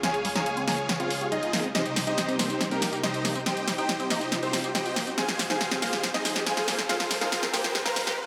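Euphoric and soaring, this short uplifting trance build-up is led by huge, lush, detuned supersaw chords carrying the melody up front, with a worn baby grand piano adding a second line in the background and a silky, nasal string pad holding sustained chords with chorus and vibrato underneath. A squelchy, resonant acid bass plays arpeggios through a filter sweep, phaser and tape colour, while a punchy analog drum machine plays a drum fill on hi-hat, snare and tambourine. A very quiet riser enters at 0.2 seconds, all set in a huge ambient reverb as the harmony moves from Db to Cm to Fm.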